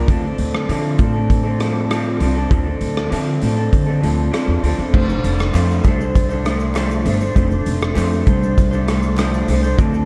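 A slightly broken-up, lo-fi electric guitar through a small old amp, with subtle chorus and warbly pitch drift, provides the accompaniment in this wistful, mellow indie and bedroom pop fragment at 99 BPM, moving from Dm7 to F6 at 4.9 seconds over woody, growly pizzicato upright bass and a punchy, saturated garage drum kit with 12-bit sampler grit and a rolled-off top, while a very quiet, hollow, distant group handclap enters at 5.5 seconds, all set in a dark, small-room production with light reverb.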